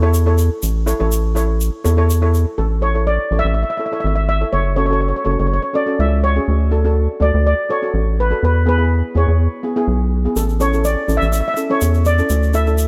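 A lightly swung sixteenth-note feel drives this carefree, festive calypso cut from a longer piece, moving at 123 BPM in 4/4 in A major. From the start, a mellow, smooth steel pan played with soft rubber sticks sits up front with a dark accompaniment, while a rubbery, hollow square-wave bass with a bouncy filter pluck and sustained notes anchors the low end. A grainy, close egg shaker adds a bright acoustic sparkle until 2.5 seconds. At 2.6 seconds a second steel pan, airy and shimmering under medium rubber sticks, takes the melody over chords moving through A, F#m, Dmaj7 and E. The shaker returns at 10.4 seconds as the harmony comes back to A and settles on Dsus2, all within a light reverb.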